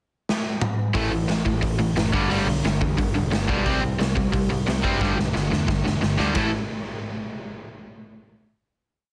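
A straight, fast 4/4 punk pulse at 178 BPM drives this short, rebellious and upbeat punk rock piece, opening with a pickup bar where a raw garage drum kit enters at 0.3 seconds with a fill. Up front, the acoustic kit has a punchy kick, a medium-tuned snare, hi-hat, ride and toms in a pumping stone room, its saturated, gritty sound carrying a rolled-off top as it lays down a punk fast groove and throws in another fill near the close. At 0.9 seconds the verse kicks in with two overdriven, picked guitars chugging palm-muted eighth notes over A5, G, C5 and G5: a compressed electric part reaching up to A4, and a hollow-body semi-hollow part sitting in the background, both with a bright bite. Underneath, a fuzz-soaked, warm electric bass, direct and amped with punchy overdrive, pushes driving eighth notes in the low register. Light reverb and a dense, heavily limited modern master keep the sound tight and loud, and the band lands on a final A5 chord at 6.4 seconds.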